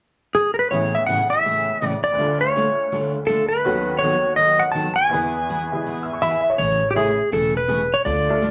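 A clean electric lap steel guitar sits up front and carries the melody from 0.3 seconds, its fingered slide lines compressed and shaped with volume swells. This playful, down-home western swing cut moves at 164 BPM in 4/4 with a swung eighth-note feel, in A major. Beneath it, a detuned, jangly honky-tonk upright piano with a vintage bright edge and a warm, picked steel-string acoustic guitar with an auditorium body fill out the accompaniment. The chords pass from Amaj7 through Dm, B7/D# and E before returning to Amaj7 at 6.6 seconds, where a woody, thumpy pizzicato upright bass with gut strings enters for the closing stretch. A small, wet room reverb and a layer of vinyl crackle give the excerpt an old-record character, and it is cut from a longer piece.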